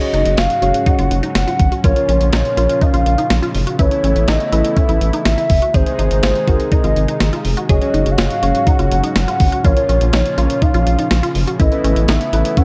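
A straight 4/4 pulse at 123 BPM from a clean, thumpy 12-bit digital drum machine and an up-front rubbery square bass drives this upbeat, wistful synth-pop excerpt, where a hollow, woody clarinet-like lead with vibrato and tape echo sings over muted felt-like keys, a bold, brassy analog pad and a squelchy blip pluck tucked in the background playing arpeggios, all moving through Gbsus2, Bbm, Aadd9 and Ab in a dark production with light reverb.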